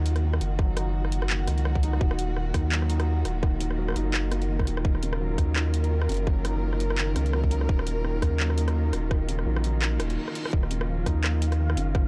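A rich, bowed chamber string section holds sustained chords with vibrato and sidechain pumping, while a soft, felt-muted upright piano with audible action noise plays arpeggios through tape echo over a deep, saturated sub bass in this dark, cinematic half-time drum and bass excerpt. A tight, up-front electronic kick enters at 0.6 seconds to join a layered kit of handclaps, rim clicks and metallic hats, both re-recorded in a small room and carrying a swung half-time feel. A reverse cymbal rises into a short break at 10.2 seconds, and a grainy, flickering granular texture with its own reverb hovers in the background from 11.0 seconds, all within a dry, gritty cassette-tape sound.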